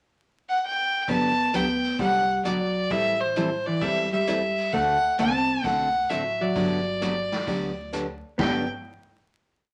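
Vinyl crackle and a wet studio reverb frame this short, playful, cheerful western swing piece in G major, swinging at 131 BPM, where a nasal, bowed fiddle with light vibrato opens with a pickup at 0.5 seconds and carries an up-front, motif-based melody in period phrases. From 1.1 seconds a clean, dark hollow-body electric guitar follows with a harmony line mostly in sixths, while a full-bodied dreadnought acoustic picks four to the bar and a woody gut-string upright bass thumps a two-beat root-and-fifth line with walk-ups from the background. A vintage kit with a punchy kick and dark cymbals on a rolled-off top keeps time on the hi-hat as the chords move from Gmaj7 through Am7 and D7 back to Gmaj7, closing on a final chord at 8.4 seconds.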